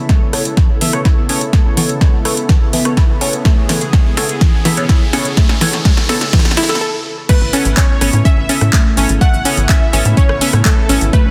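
Expansive and uplifting, this progressive house excerpt in A major at 125 BPM opens on a smooth, detuned analog pad holding an Aadd9 chord, while a glassy, crystalline wavetable pluck arpeggio with dub echo gets a filter sweep, and chorused, phased polysynth stabs and a deep house kit with a punchy snare and metallic hats build up through a drum fill, with an overdriven, deep kick up front and a riser in the background from 2.2 seconds. After a stop at 6.8 seconds, where a lush, bright unison pluck melody enters, the drop arrives at 7.3 seconds with an evolving soft supersaw line in the background and a tight, nasal sequencer bass driving beneath. Sidechain pumping runs through the synths, bass and the kit's lighter percussion, and the mix is dense and heavily limited with light digital ambience.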